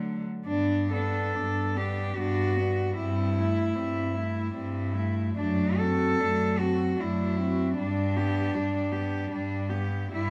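A moderate recital-hall reverb surrounds this tender classical piece for four bowed cellos, all played sul tasto with a soft attack, in G major and a rubato 3/4 between 64 and 79 BPM, where a warm, up-front bass, a floating accompaniment with a smooth top and an intimate, close second line with light vibrato sound together from the start before a rich, pure melody enters at 0.5 s over the chords G, Am7/G, D7/F# and G.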